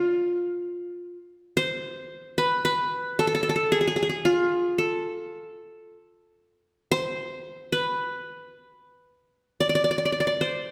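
Set in a 10/8 with a straight feel, this brief melancholic, soulful Turkish excerpt features a solo qanun moving within makam nikriz across a one-octave span. The plucked, triple-strung qanun sits up front with a bright edge over a warm body, bathed in the generous reverb of a church or concert hall that lingers around each note.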